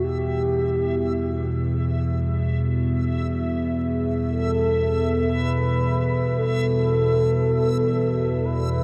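Floating in free time, this short dark ambient drone cut from a longer piece sets an ominous, unsettling mood under a vast, wet cathedral reverb. Up front, a resonant drone with moving, sweeping overtones holds low in the E2 to B2 range, its slow attack and long release giving it a heavy, sustained presence. Behind it, a deep, moody pad built from detuned unison voices and a sub octave sustains dark chords on E minor, fading in across the full 8.8 seconds. A reversed, granular texture with a dreamy, detuned shimmer also fades in, hovering high on E5. Above the drone, a mellow, horn-like synth lead with a round tone and soft attack carries the melody between G4 and B4, colored by a filter sweep, vibrato, phaser, cassette tape and tape echo.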